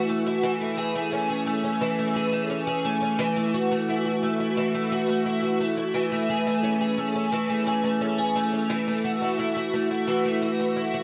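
Ethereal and blissful, this dream pop fragment at 87 BPM in A major features a solo picked twelve-string acoustic guitar, bright, boxy and shimmering with octave-doubled fresh strings, sitting up front through ensemble chorus and digital delay while a wet plate reverb with a 2.5-second tail surrounds it as it moves between Amaj7 and Esus24 for 11.0 seconds.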